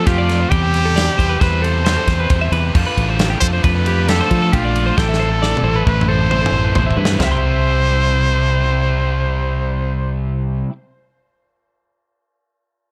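Bright and playful, this math rock and midwest emo excerpt moves at 135 BPM in 5/4 and C major. An up-front trumpet carries a vibrato-tinged, pop-style melody over twangy, compressed twelve-string electric guitar arpeggios bathed in spring reverb, alongside a double-tracked overdriven guitar riff with a biting edge and a growly fingered electric bass. A punchy acoustic studio kit with a medium-tuned snare plays a fill from 5.0 seconds and stops at 7.3 seconds, while a shadowy clean electric guitar is barely audible through the first 0.5 seconds, set within a dark, warm production with light reverb.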